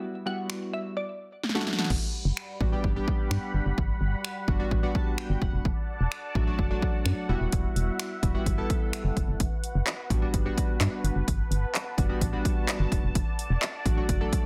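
Euphoric and upbeat, this dance-pop excerpt runs at 128 BPM in G major. It opens with a glassy, crystalline wavetable pluck melody over chorused retro synth keys with tremolo and sidechain pumping. Punchy, overdriven house drums enter at 0.5 seconds, with a soft-clipped snare, and the pluck stops at 1.6 seconds. At 1.9 seconds, a hollow, dark, organ-like FM bass and an airy, detuned supersaw swell join, both pumping to the sidechain. The keys later add a brief fill from 4.7 to 5.7 seconds, all within a dense, heavily limited modern master.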